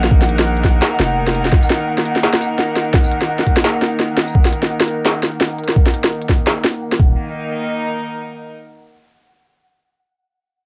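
A rich, reedy chamber string section carries this heavy, cinematic half-time drum and bass piece at 170 BPM in Eb minor with sustained, distant chords, filter-swept and sidechain-pumped under a cassette-tape haze, while a deep sine 808-style bass sounds at the start and returns briefly later, a gritty, overdriven, thumpy electronic kick sits up front beside an industrial kit of clanging snare, crisp hats and tambourine, and a mellow, pulsing gated triangle texture with chorus hovers in the background until 7.2 s, after which the strings play alone to 8.5 s.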